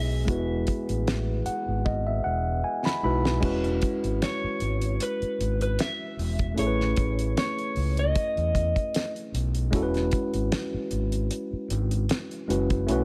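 A dark, slightly broken-up electric guitar with harmonic tremolo carries the melody until 9.1 seconds in this romantic, lush 1970s-style soul piece at 76 BPM in E major, over a worn, slightly out-of-tune tine electric piano, an overdriven fingered electric bass and a mellow French horn section holding background chords until 3.4 seconds, while a dry, damped 70s drum kit with a fat snare and tight kick joins at 0.3 seconds, the piano and drums each adding a fill before the harmony moves through E6 and Amaj7 in light reverb and studio ambience.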